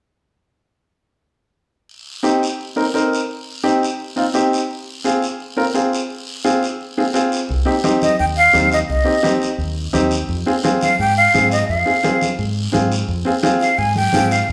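A breathy, up-front jazz flute carries the melody from 8.0 seconds, its warm metal tone shaped by vibrato, a soft attack and lifted highs as it phrases expressively over this fiery, danceable cumbia in C minor at 172 BPM. The piece, cut from a longer performance, opens at 1.9 seconds with a raspy guiro and, moments later, a clear upright piano whose woody, intimate accompaniment sits close enough to reveal the noise of its action. The harmony moves between Cm and Fm throughout. At 7.5 seconds the second section arrives as a deep dub fingered electric bass enters, dark, round and punchy with a direct, amped sound, alongside bright, thin-skinned congas played with soft hands in the background. The band plays live in one room, bathed in a wet large-studio reverb.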